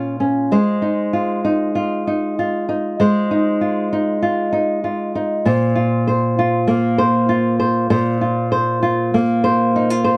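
A lone flamenco guitar opens this short pop excerpt, playing by itself from start to finish at 98 BPM in straight 4/4. The mood is reflective and wistful, with the harmony moving from Bbmadd9 to Ab6, then settling on Bbsus2 when a second section begins at 5.5 seconds. The guitar is thumb-plucked and sits up front, spanning Bb2 to C5, and its boxy acoustic tone carries audible finger squeak that adds intimacy. A light reverb touches the instrument, while the overall sound is a dry, close 1970s-style studio recording. The passage is cut from a longer piece and ends at 10.2 seconds.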